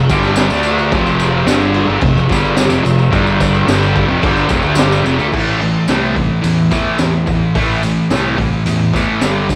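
A thick, bright fuzz guitar riff opens this raw, swaggering garage rock excerpt at 109 BPM in A minor, double-tracked and up front over a dark, round fingered bass with overdriven grit, moving through F5 and G5 before landing on A minor at 5.3 seconds. A raw garage drum kit joins at 0.1 seconds with a high-tuned snare, boomy kick, hi-hat and crash, its saturated, rolled-off sound carrying cassette-tape character like the guitar, while a jingly tambourine sits in the background. The whole cut has the moderate studio ambience of a home recording on cassette.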